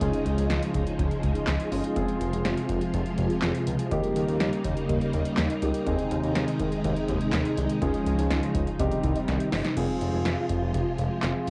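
A straight 4/4 pulse at 123 BPM comes from an analog drum machine with a deep kick, punchy snare, metallic hats, handclaps and a crash, tape-warmed and re-recorded in a small room, with a fill at 9.3 s leading into a new section at 9.8 s. Underneath, a smooth, detuned sawtooth-and-square synth bass holds the low end while a concert grand piano with deep bass plays accompaniment and a silky, up-front string machine with ensemble chorus sustains slow-blooming chords through Dbadd9, Fm, Eb7, Ab/Eb and Cm. This short synth-pop clip in F minor feels melancholic and cool, its cassette home-recording character wrapped in light digital reverb.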